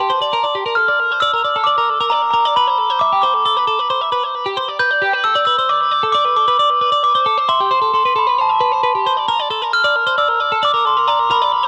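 A bell-like glockenspiel struck with soft plastic mallets carries the melody up front from the first moment, over clean, compressed twelve-string electric guitar arpeggios colored by analog delay, in a wistful, intricate rock fragment cut from a longer piece at 134 BPM in 5/4, moving through Bbmaj7, Am11, Gadd9 and C6 with the cassette-tape grain and light small-room reverb of a home recording.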